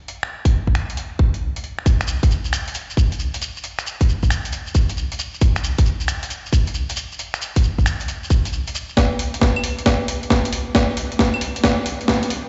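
Heard through a big sound system in a bare room, this cut-out from a longer UK garage track sits in a lush hall reverb with a dulled top end. At 135 BPM with heavily swung 16ths, a soulful, skippy groove comes from an up-front, gritty, pitched-up sampler-style breakbeat kit of claves, finger snaps, hi-hat and a medium-tuned snare, and a tight, layered electronic kick re-recorded in a small room. A grainy, mellow shekere, close and dry, joins at 1.9 seconds and drops out at 9.0 seconds, when the drums break into a fill-driven build-up through the end.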